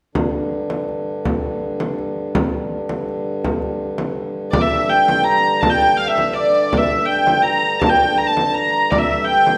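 A reedy, breathing harmonium drone and a deep frame drum open this driving, ancient-sounding medieval dance excerpt in G dorian at 164 BPM in 3/4, until a dark, woody hurdy-gurdy enters up front with the melody at 4.5 seconds, all set in the wet reverb of a recital hall.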